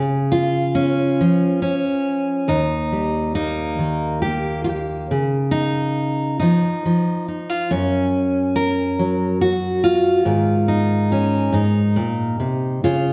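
A fingerpicked steel-string dreadnought acoustic guitar sits up front in this peaceful, hopeful solo folk excerpt. Its full-bodied tone, with audible finger squeak and a slapback echo, moves through Db and Eb chords, then reaches a new section at 5.1 seconds on Dbadd9 and lands on Ab at 10.2 seconds. The slow 6/8 pulse, around 46 BPM in dotted quarters, unfolds with a rubato feel, tuned to A4 = 439 Hz and framed by a wet recital hall reverb with a 1.4-second decay.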